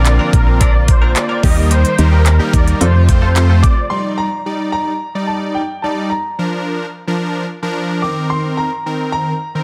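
A straight 4/4 groove at 109 BPM drives this summery, upbeat dance-pop drop, where a knocking, tape-tinged pop drum kit of kick, handclaps and crisp hats sits up front beside a punchy, dark FM bass and a fat, bold, detuned polysynth, both pumping with sidechain, while a sidechain-pumped, evolving supersaw swell carries the melody through digital delay, and a shimmering, sidechain-pumped pulse-width pad and a twangy, direct-recorded clean electric guitar riff with lush chorus sit in the background, until at 3.6 s a warm, natural baby grand piano takes over the melody high in its range with digital delay over the polysynth through 9.6 s in a dense, heavily limited, dry mix.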